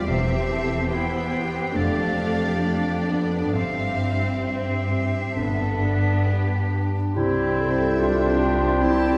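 Classical slow romantic movement for symphony orchestra, tender and serene, with a gently rubato pulse and the spacious sound of a reverberant scoring stage heard from further back in the room. Rich, vibrato-laden violins carry the melody while a second violin line, a hollow, close-miked flute high above and a clarinet in the background weave supporting lines over focused violas, ringing fingerpicked harp arpeggios, soft-attack cellos and smooth double basses. Near the close of this excerpt, a French horn section enters with sustained chords at 7.1 seconds, and a mellow, distant cor anglais and a background bassoon join at 7.2 seconds as the harmony settles home.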